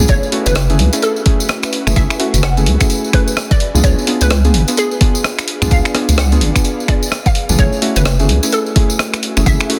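A skippy, swung two-step garage groove at 128 BPM in F# minor, with a punchy, tape-warm electronic kick up front, a gritty, pitched-up sampler kit of finger snaps, hi-hat and rim click, and a close, jingly tambourine, carries this late-night excerpt over a deep, dark wobble bass with chorus, mellow chord stabs trailing dub echo through F#m9 and C#7b9, a hollow, bouncy square-wave pluck melody with digital delay, and two ethereal pads: one faint and airy with phaser, the other a warbling, vintage texture that pumps in the background.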